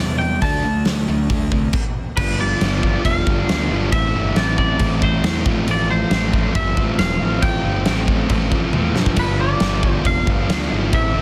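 Quiet-loud alternative rock at 137 BPM with a dark, cathartic mood, this excerpt pairs a clean, twangy lead guitar melody against two overdriven rhythm guitars, one sludgy and one raw garage-toned tucked in the background, over a punchy fuzz bass. A big, up-front acoustic drum kit with a punchy kick and a smooth, dark sound enters at 0.4 seconds, halts for a brief stop at 1.7 seconds, then drives through chords of G7, Am and F with a fill at 8.7 seconds. The sound is dry, dense and heavily limited.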